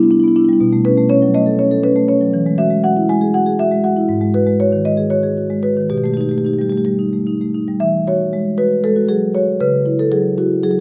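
A solo marimba played with medium mallets sits up front with a warm tone, carrying this flowing contemporary classical piece in a rubato 7/8 across a range from G#2 to G#5. Its harmonies drift through colours such as Cmaj9, Eadd9 and Baug7 before a new section arrives at 7.8 s, settling on E69 and C#madd11. Close, detailed microphones and a light reverb frame this short passage, cut from a longer work, which runs to 10.8 s.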